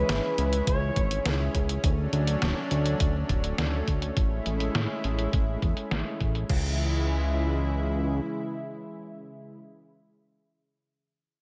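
A steady, straight 103 BPM pulse in 4/4 carries this moody, nostalgic synthwave excerpt in C# phrygian, where a detuned 8-bit drum machine thumps with an up-front kick, crash, low-pass-filtered hi-hats and a medium-tuned snare beneath a fat, tube-saturated analog bass whose filter sweeps through the opening 6.5 seconds, a lush, airy unison pad pumping with sidechain and chorus across C#m, Dmaj7 and Amaj7, and a smooth, vibrato-laden lead with tape echo that sings only until 1.8 seconds, all set in light reverb.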